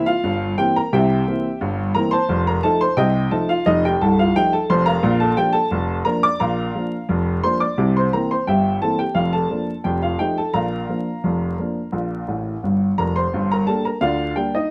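Cheerful and jaunty, this short ragtime piano piece moves at a steady 87 BPM in a straight 2/4 feel, set in Bb major. A single upright piano carries everything, its woody, slightly detuned voice sounding vintage and smooth, with long sustain and a place up front in the mix. The harmony starts on C7 and moves through F7 to Bb, later passing through Bb/F and F7 before settling back on Bb at 10.5 seconds. A brief piano fill runs from 12.3 to 13.3 seconds, and the passage repeats its opening section just as a Gm chord arrives. Light reverb and vinyl crackle give the sound the feel of a live performance in one room, and the clip is cut from a longer piece.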